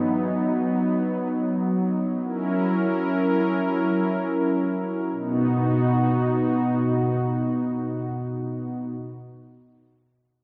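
Pop fragment with an anthemic, uplifting mood, carried by a single up-front analog synth pad whose smooth, detuned sawtooth chords open with a slow attack and sustain from B through F#7 at 2.2 s and back to B at 5.1 s, treated with chorus and set in an echo-heavy mix of moderate spring reverb and small-room ambience.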